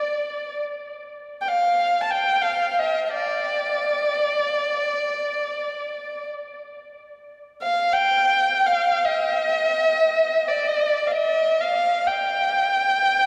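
A lone bowed violin, dark and woody with a trembling vibrato, drifts up front in free time through a hypnotic, longing Arabic maqam passage, its analog delay trailing into a cathedral reverb that lingers 5.5 seconds and soaks this distant-sounding fragment of a longer piece in a dreamy haze.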